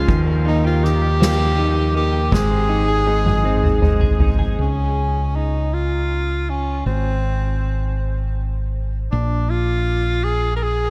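An unhurried six-eight lilt carries this heartfelt, romantic pop ballad, heard as a fragment cut from a longer piece. A clear tenor saxophone sings the melody up front throughout, its pop-style tone smooth on top with light vibrato and scooped notes, trailed by a diffuse ambient delay. A round fingered electric bass, direct and amped, anchors the low end. Beside it, a soft-mallet drum kit with dark cymbals, a punchy kick, snare, toms and ride plays until 4.6 seconds, with a fill starting at 2.3 seconds. Over that opening stretch, an intimate grand piano with audible action noise and a subtle chorus supports the harmony, while a clean, compressed electric guitar picks arpeggios through lush chorus and delay until 5.2 seconds. After that, saxophone and bass carry the rest of the second section alone, the recording set in a light reverb.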